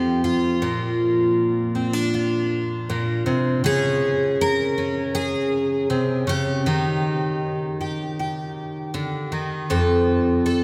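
Folk for solo fingerstyle guitar, pastoral and gentle at 79 BPM in a straight 4/4, tuned slightly below standard pitch at A4 = 435 Hz. A picked twelve-string acoustic plays alone up front through the whole 10.6-second excerpt, its jumbo body full and its fresh strings bright and shimmering with octave doubling. Finger squeak is audible as the chords move from F5 through Bb, Db5 and Eb back to F. A wet cathedral reverb with a 5.3-second decay surrounds the guitar, as in a church or concert hall.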